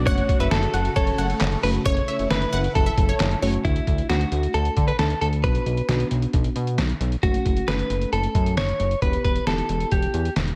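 Melancholic and nocturnal, this echo-heavy synth-pop fragment at 134 BPM in 4/4 sets an up-front, direct-recorded clean electric guitar melody with analog delay over a fat, detuned analog bass, muted felt-like synth keys with chorus, and a gritty, pitched-down trip hop sampler-style kit of thumpy kick, snare, hi-hat and handclaps, while a swirling, phased string machine and a lush, punchy unison pluck line colour the opening until about 3.6 seconds, after which the harmony moves through D, Bm, F#m and Em under light reverb and digital ambience.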